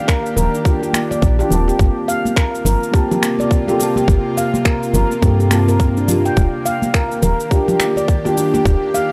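A felt-muted upright piano and a string-like drone open this hypnotic stretch of organic downtempo, cut from a longer piece, at 105 BPM in 4/4 with a 16th-note swing in G minor. The piano plays dark, intimate accompaniment through thick felt with a tape echo and sidechain pumping. The detuned sawtooth drone holds tense sustained chords with vibrato and its own reverb, pumping as well. From 0.1 seconds a close-miked handpan rings out meditative arpeggios up front, joined by an overdriven, tight electronic kick and tape-warm electronic finger snaps and shaker. At 0.4 seconds a woody, round FM bass enters up front, with soft-handed congas in the background, as the harmony moves from Ebmaj7 to Gm11 and back to Ebmaj7. The mix has a dry, gritty hardware character within a digital ambience.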